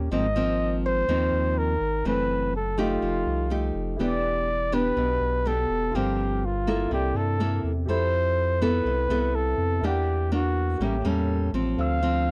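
A straight 4/4 bossa nova groove carries this breezy, sunny passage, cut from a longer piece. A fingerpicked nylon-string guitar sits up front with classical poise, its finger squeak audible, while a round, sine-like sub bass anchors the low register with a fast attack and sustained notes. Just after the start, a flugelhorn takes the solo melody in a jazz style, its tone smooth on top and touched with vibrato. At 4.0 seconds a concert grand piano slips in behind the others, intimate and natural, with audible action noise and deep bass. The harmony drifts through rich extended chords such as Ab69, Fmaj9#11 and A7b9, and the dry, close sound recalls a 1970s studio with little reverb.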